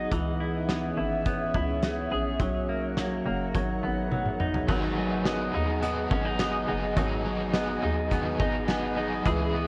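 A loose indie drum kit with a fat snare, punchy kick and dark cymbals drives a straight groove in this hazy, melancholic dream pop piece, beneath a bouncy, hollow FM bass, a bright, twangy clean electric guitar playing arpeggios through lush chorus and tape echo, and an ethereal, detuned pad holding sustained chords, until a drum fill at 4.1 seconds leads into a double-tracked, overdriven semi-hollow guitar with tremolo at 4.7 seconds, the mix steeped in spring reverb and the warbling pitch drift of worn cassette tape.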